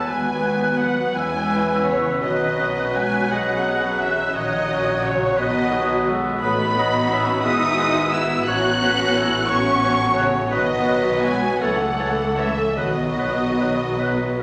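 This is a serene, lyrical slow movement for symphony orchestra in 6/8, played with flexible rubato and heard as a 14.4-second cut from a longer piece. A rich chamber violin section carries the expressive, vibrato-laden melody up high, while a second violin section with a focused, smooth top weaves a companion line alongside it. Further second lines come from a clear oboe, a distant, roomy clarinet and a pure, crisp-attacked flute ensemble set back in the background. A lush viola section with soft attack and portamento fills the middle with accompaniment alongside a very quiet, mellow bassoon, and French horns and a faint, vintage-toned trombone section hold sustained chords. A dark, close double bass section and a background cello section anchor the bass, and the whole orchestra sits in a wet scoring-stage reverb that lends a spacious glow.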